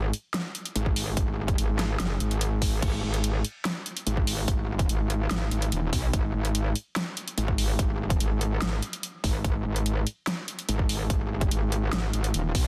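A metallic, aggressive wobble bass with chorus and overdrive opens this chaotic, heavy dubstep excerpt at 145 BPM in a half-time G# minor feel, tuned to A4 = 445 Hz, joined at 0.1 s by an up-front kit of huge snare, bright hi-hats and crash cymbal with a tape-warm tinge, while a punchy, overdriven electronic kick drops in at 0.9 s, all set in digital ambience under a dense, heavily limited modern master.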